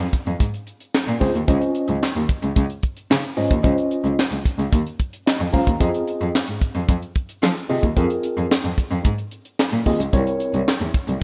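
A bowed cello opens the track as the bass voice, played by one player with a rich, nasal, boxy tone, vibrato and a focused presence up front. A tight, dry acoustic funk drum kit joins almost at once with handclaps, hi-hat, a tight kick and a high-tuned snare, giving this danceable early-eighties boogie funk fragment a straight, funky pulse. At 1.2 s a worn, slightly out-of-tune tine electric piano enters as accompaniment, lightly overdriven and heard through built-in speakers, and it plays a short fill at 5.0 s. The harmony holds on F minor before shifting to a C7b9 chord near the end. The whole short clip sits in a moderate, lush hall reverb, with the rough, dull-topped sound of a home demo mix.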